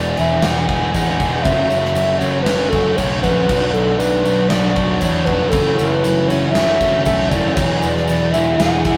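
A straight 4/4 pulse at 118 BPM drives this hazy, dreamy shoegaze and dream pop rock fragment in F# minor, with a gated 80s drum kit of punchy kick, medium-tuned snare and bright crash cymbals joining at 0.2 s alongside a jingly tambourine in the background, while a fuzz-soaked picked electric bass anchors the low end. A biting overdriven guitar and a raw garage guitar set further back both play riffs under a reedy, woody FM lead that carries the melody with a warbling vibrato, soft sustained attack and chorus, moving through Eadd9, F#m7 and Bm. At 5.5 s a shimmering, octave-doubled twelve-string acoustic guitar adds picked arpeggios, all set in a wet stone room reverb with the rough, tube-saturated character of a rehearsal-room recording.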